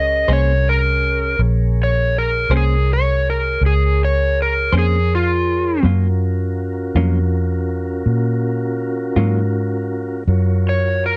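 Mournful and soulful, this slow blues moves at 54 BPM with a straight 12/8 feel, set in Bb minor and cut from a longer piece. An overdriven slide guitar carries the melody as a solo across the whole passage, its dark, gritty tone sitting up front between F4 and Eb5. Beneath it, a muted fingered electric bass gives a round, punchy, foam-damped low end, while a mellow tonewheel organ holds soft, flute-like sustained chords with a hint of key click through a slow rotary speaker. A clean, compressed electric guitar with tremolo enters at 0.3 seconds to add accompaniment and drops out at 9.4 seconds. The harmony shifts from Bbm9 to Gbmaj7 at 5.8 seconds, and the dry, dark production keeps the whole band close and intimate.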